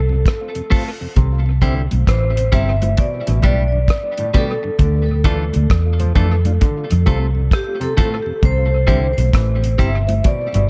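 Uplifting and warm, this roots reggae excerpt moves at an unhurried 66 BPM in C major with a swung sixteenth feel, its chords cycling through F, C, G and D minor in an echo-heavy mix with light small-room reverb. A round, punchy, foam-muted electric bass and a dry, dark 70s drum kit with tight kick, hi-hat and rim click sit up front, while a ringing, metallic vibraphone carries the melody through tape echo with fast motor vibrato. Around them, a clean, compressed electric guitar with tape echo, a mellow tonewheel organ with key click, slow rotary speaker and tape echo, an overdriven, stringy clav playing arpeggios through auto-wah, and very quiet, high-tuned congas with a bright, thin skin enter within the first 1.2 seconds.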